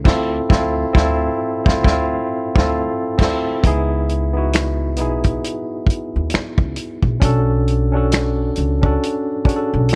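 Introspective and sultry, this slow neo-soul R&B fragment at 67 BPM sways on swung sixteenths as a dry, up-front soul drum kit with a tight kick, medium-tuned snare, hi-hat, finger snaps and crash sits over a woody, thumpy pizzicato upright bass, while a worn, slightly out-of-tune tine electric piano heard through its built-in speakers moves from Dm9 to C#m9 at 3.6 seconds and Bm9 at 7.2 seconds, with a band accent marking the opening bars in a dark, warm studio production.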